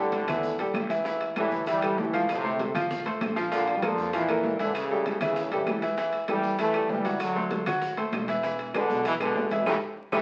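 Crackling like a very old 78 rpm record and bathed in wet studio reverb, this driving, fiery salsa fragment puts a brilliant, tight trombone section with light vibrato up front on the melody over a bright, slightly detuned upright piano with audible action noise. A dark, thumpy pizzicato upright bass, ringing timbales, thick-skinned congas, woody claves and grainy maracas drive the groove in the background, joined by very quiet high-tuned bongos, and a band accent lands at 9.7 s.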